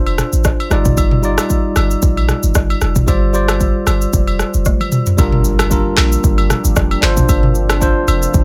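Afrobeats in G minor at 114 BPM with a lightly swung sixteenth feel, this mellow, smooth excerpt cut from a longer piece rides on a clean tine electric piano heard through built-in speakers and a boomy, sine-based 808-style bass with a fast attack and decaying tail. An up-front, electronic afro-pop drum kit with a deep kick, handclaps, rim click, shaker and toms, re-recorded in a small room, sits alongside close and dry acoustic agogo bells and woodblock, with chords moving from Dm7 through Ebmaj7/G and Fsus2 to Gm7. A drum fill leads into a very quiet electronic impact at 5.2 seconds, and at 6.1 seconds a moody, detuned sawtooth pad with a sub octave, slow attack, long release and chorus slips in very quietly beneath the groove, all under light reverb.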